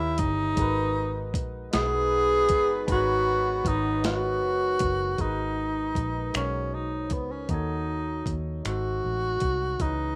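Yearning and late-night in mood, this slow six-eight R&B piece in G# minor moves at 52 BPM with a straight feel, cut from a longer piece. A tenor saxophone carries the melody up front in a smooth, jazz-style solo with vibrato and scooped notes, bathed in plate reverb. Beneath it, a barky tine electric piano, lightly overdriven through a combo amp and treated with phaser and plate reverb, supplies bright accompaniment, while a round, foam-muted fingered electric bass adds a dark, punchy low end. A tight, clear horn section sits in the background with pop-style stabs in octave doubling and light vibrato until 4.8 seconds. The dusty sampler-style kit, gritty and tape-colored with a thumpy kick, medium-tuned snare, hi-hat and finger snaps, enters at 0.2 seconds, and the harmony settles on G#m9 before turning through D#m7b5 to G#7b9, all heard in a rough home demo mix with a wet studio reverb.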